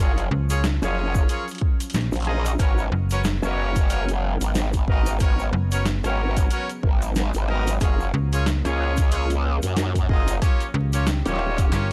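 Swaggering and gritty, this glitch hop excerpt struts at 92 BPM in G# dorian with a swung 16th feel, moving through F#maj7, G#m11 and D#7 over a dry, crackling vinyl-flavoured sound. A pitched-down, compressed sampler-style boom bap kit of hi-hat, rim click and snare, a grainy egg shaker in the background, and two up-front basses are under way from the opening moments: a growling, saturated bass with wobble and chorus, and a snappy, metallic FM slap-style bass. A punchy electronic kick joins them at 1.1 s and drops out at 11.7 s for a drum fill. Brilliant horn stabs with vibrato and octave doubling carry sidechain pumping and analog delay, while a warbling, nostalgic lo-fi pad holds sustained chords with chorus, reverb and pumping behind them.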